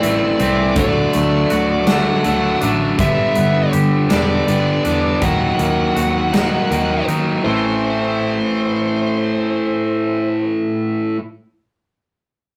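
Up front and brilliant, a compressed distorted guitar riff drives this cathartic, angsty quiet-loud alternative rock excerpt in a slow 6/8 at 54 BPM in A dorian, joined by a dark high-gain lead melody, clean twangy fingered arpeggios, a round foam-muted picked bass and a big-room acoustic drum kit with a punchy kick that drops out at 7.3 s, all caught in a rough rehearsal-room recording with saturation and moderate reverb as the chords move from Am through D and G to D#m.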